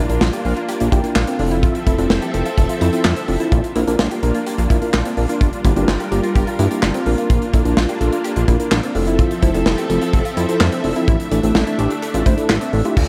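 A glossy, retro chorused synth bass sits up front with a punchy acoustic studio kit of kick, medium-tuned snare, hi-hat, handclaps and crash cymbal in a pumping room, driving this melancholic, cool synth-pop excerpt at 127 BPM in a straight 4/4. A clean, mellow tine electric piano carries the accompaniment and adds a brief fill at 0.7 seconds, while a vintage string-machine viola pad holds slow-attack chords through an ensemble chorus. A soft, round pluck plays chorused arpeggios with slapback echo in the background, over changes that move through Bb, Fmaj7 and Gm7 before resting on Asus4, all set in light reverb.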